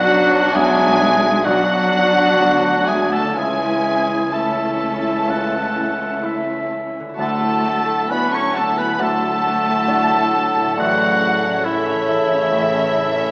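In a free, rubato 4/4, this moving and uplifting cinematic passage sets a smooth, vibrato-rich violin section melody over a lush string bed: a darker, very quiet second violin line, a distant viola section with expressive portamento, a focused cello section and a woody, soft-attack double bass section. Second lines come from an airy, hollow flute and a vintage-toned oboe, with a distant, roomy clarinet appearing only from 4.3 to 7.2 seconds, while a dark French horn section holds sustained chords in the background. A polished grand piano accompaniment with short sustain and faint, ringing fingerpicked harp arpeggios move through Bm, A/C#, Dadd9 and A, all set in moderate scoring-stage reverb with a small-speaker sound.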